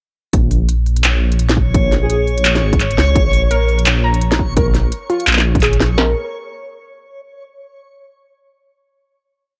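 This complete piece has the light reverb and tape-worn character of a home recording on cassette. It is a cinematic, spacious half-time drum and bass track with a swung feel, carried by two electronic drum kits: one delivers a heavy kick and clanging snare, while the other, up front, adds crisp hats, a second snare and handclaps in a sparse half-time beat. A deep, rumbling detuned saw bass also sits up front, playing chopped phrases with a beating, shadowy tone. A reversed, dreamy texture enters at 1.1 seconds, holding a bright high note with granular detail and its own reverb. A soft, breathy flute-like synth lead with vibrato and chorus appears briefly in the background, and from 3.5 seconds a warbling, lo-fi, dusty pluck with chorus and analog delay runs a 12-step loop that drifts against the bar, until the drop gives way to a final note at 6.0 seconds.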